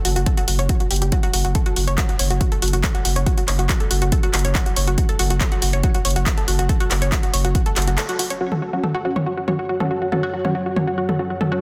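Driving peak-time techno at 140 BPM in F# minor, this cut from a longer piece feels dark and relentless, built on a single F#5 chord in a straight 4/4. A round, sawtooth-and-square analog pluck riff with a sub octave, chorus, tube saturation and digital delay runs throughout. Beneath it, a thick, overdriven sine sub bass holds F#1 under a low-pass filter. An up-front techno kit of handclaps, hi-hat and toms sits alongside a heavy layered electronic kick drum, and both kit and kick carry the sound of a large room. The sub bass and kick both drop out by 8.0 seconds, where a short break and a band accent mark the turn. From 8.4 seconds an aggressive, detuned rave stab with ring modulation, tape echo and reverb arrives with a soft, breathy noise-layered pad, and a deep, moody ambient drone on F#3 slips in at 9.3 seconds. The pluck, stabs and both pads pump against the sidechain inside a dense, heavily limited master with light digital ambience.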